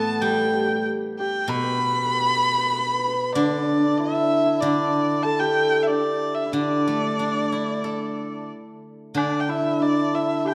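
Loosely timed in a rubato four-beat metre, this graceful, festive Chinese traditional chamber piece is a short cut from a longer work. A rich, bowed erhu carries the melody up front, its single player moving smoothly and evenly with vibrato and portamento in a high register. Beneath it, a mellow hammered dulcimer adds a shimmering second line, while a bright steel-string zither, played with fingerpicks and also placed up front, supplies silvery, ringing accompaniment across a broad lower span. At 9.2 seconds the music moves into a new section, and a very quiet woodblock enters, close and dry, beside the strings until the end at 10.5 seconds. A recital-hall reverb surrounds the ensemble with a spacious, resonant glow.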